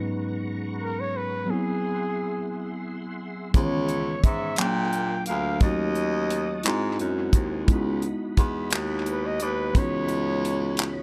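Yearning and sultry, this slow six-eight R&B excerpt in C# dorian at 58 BPM opens with a worn, slightly out-of-tune tine electric piano carrying dub echo over a clear tonewheel organ holding background chords through a slow rotary speaker, with a breathy, whispered flugelhorn melody with vibrato and its own dub echo entering moments later, and a dry, damped 70s drum kit of tight kick, hi-hat and handclaps arriving at 3.5 seconds just before a distant, roomy baritone saxophone takes the bass at 3.6 seconds, the whole set in an echo-heavy mix with studio reverb.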